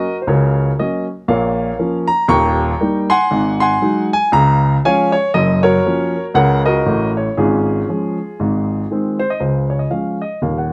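Swinging and exuberant, this short stride-piano jazz excerpt in Db major moves at 118 BPM with a swung 4/4 feel, as a lone upright piano with a woody, polished tone and long sustain sits up front under close, detailed microphones and light reverb, ranging from Eb1 to Db6 through a progression that passes from Bbm, Eb7 and Ab7 to Gbmaj7 before a new section arrives at 9.4 seconds.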